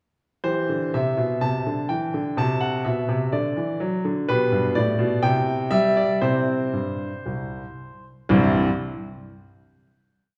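A classical-period piano sonatina, graceful and playful, played with rubato in 4/4 on a clear, smooth grand piano with a vintage character and long sustain, sitting up front even as a recital hall's wet reverb places the listener further back in the room. A single-line melody runs above an independent bass line in counterpoint, spanning C2 to A5 and moving from C through D7 and G back to C, with a brief stretch outside any chord before a final C chord. The piece begins at 0.4 seconds, and the piano rings out into the hall's 1.5-second tail until 10.3 seconds.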